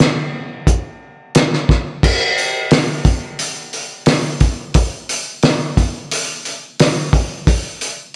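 A straight 4/4 rock beat at 88 BPM drives this brooding excerpt, carried by a cloth-damped, thuddy acoustic drum kit playing kick, snare, hi-hat and crash from 0.0 to 8.0 seconds. The kit sits up front with a fat snare, tight kick and dark cymbals, its muffled, gritty, saturated tone rolled off at the top for a lo-fi feel. A moderate concert-hall reverb surrounds the sound, and the music moves into a new section at 2.0 seconds.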